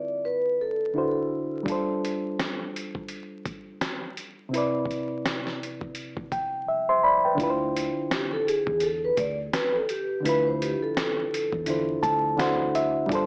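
Reflective and hazy, this lo-fi hip hop fragment at 84 BPM in D dorian opens on a worn, slightly out-of-tune reed electric piano through its built-in speakers and a brief ringing, mellow vibraphone phrase with tape echo, then a gritty, compressed sampler-style drum kit with a thumpy kick and fat snare arrives at 1.7 seconds, a dark, foam-muted fingered bass enters at 7.4 seconds, and the vibraphone returns at 8.1 seconds, all wrapped in vinyl crackle and small-speaker grit.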